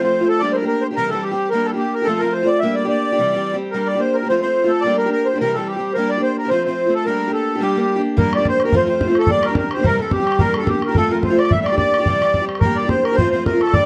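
A reedy, sweet accordion with light tremolo tuning carries the melody of this spirited, dark Celtic reel from the start, set up front with plate reverb over a boxy, picked parlour steel-string guitar that picks through a cycling G minor, C and F progression with a lilting swing. At 8.2 seconds, as the tune's opening section comes around again, a tight, damped bodhran enters with a live-room sound and drives the lively feel. The production is dark and warm, with moderate studio reverb, and the passage is cut from a longer piece.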